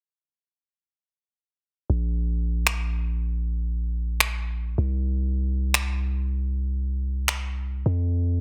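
Lush and euphoric in mood, this future bass fragment, cut from a longer piece, moves at 156 BPM in 4/4 with a half-time feel. A long, sustained 808-style bass enters at 1.9 seconds, deep and sine-like, with a fast attack and a mellow, decaying tail that sits up front between Bb1 and F2. Electronic finger snaps join at 2.7 seconds and run until 7.4 seconds, sounding electronic and produced in the foreground. The snaps carry soft clipping and studio reverb, while the overall space stays dry. The master is dense and heavily limited in a modern style, giving the short passage a full, compact weight.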